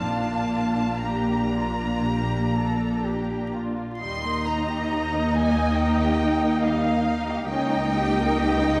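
Heard through a wet concert-hall reverb and a vinyl crackle, this short cut from a slow, serene romantic movement for string orchestra drifts with rubato in 4/4 around 58-71 BPM, moving from Bb major to Eb major at 4.0 s as a close, warm violin section sings the lyrical melody with vibrato and portamento, a dark, smooth-topped violin section weaves a second line beneath it, a distant, rich viola section supplies accompaniment, a focused, lush cello section sits in the background on the bass, and a close double bass section grounds the low end with expressive bowing before the harmony slips to Eb7/Db at 7.5 s.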